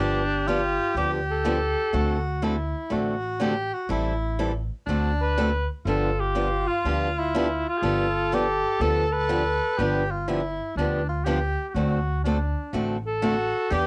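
A playful, charming jazz manouche excerpt at a swung 122 BPM opens with a mellow, vibrato-rich cor anglais carrying the melody in phrases that return at 5.2 s and 13.1 s, while a subtone soprano saxophone with scooped notes and light vibrato weaves a second line throughout, a boxy, picked parlour steel-string guitar with old strings picks through the G7, D7 and Am7 changes, and a thumpy, woody pizzicato upright bass sits up front beneath them, with the horns and guitar carrying a cassette-tape tint in a moderate reverb that gives the piece a homemade feel.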